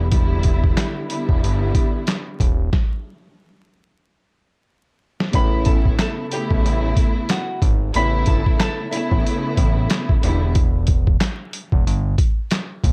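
A swung 92 BPM boom-bap groove in 4/4 drives this gritty, reflective hip-hop excerpt, its compressed, pitched-down sampler drums thumping up front with kick, snare, hi-hat and handclaps, then dropping out briefly before a drum fill leads into the second section at 5.3 seconds. Underneath, a fat sawtooth-and-square analog bass with a moving notch sits alongside a lush, woody bowed string section colored by cassette tape, over chords moving from Em7 to Aadd9 and back to Em. From 5.3 to 9.4 seconds a fingerpicked flamenco guitar carries the melody with audible finger squeak and slapback echo, set in a dark production with vinyl crackle.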